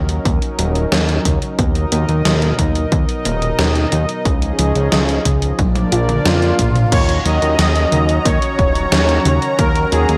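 Moody and cinematic, this synthwave excerpt in Eb minor moves at 90 BPM in a straight 4/4, with a smooth, chorused analog pad holding sustained chords that pump against the sidechain, a very quiet, warbling pluck spinning dark arpeggios, and a fat, detuned sawtooth bass sitting up front under a punchy, tape-warm electronic kick. An overdriven 80s drum machine with gated reverb on its snare drives the beat with crash, hi-hat and toms, rolling into a drum fill from 5.6 to 6.9 seconds as the chords pass from Ebm7 through Dbadd9 to Bb. At 6.3 seconds a soft unison supersaw lead enters up front with digital delay, carrying the melody into the closing section back on Ebm7 under a light reverb.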